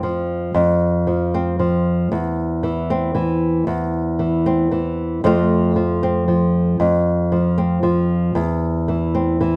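A lone nylon-string guitar carries this brief folk excerpt, fingerpicked close and up front with a small, dark acoustic tone, and the soft squeak of fingers on the strings is audible. The mood is melancholic and haunting, set in a moderate triple metre with a straight feel. The harmony moves through F5, C/E and F before returning to C/E near 8.4 seconds, all within the guitar's low-to-middle range. Light reverb surrounds the instrument, and the overall production is warm and shadowy. Lasting just under ten seconds, the passage is cut from a longer piece.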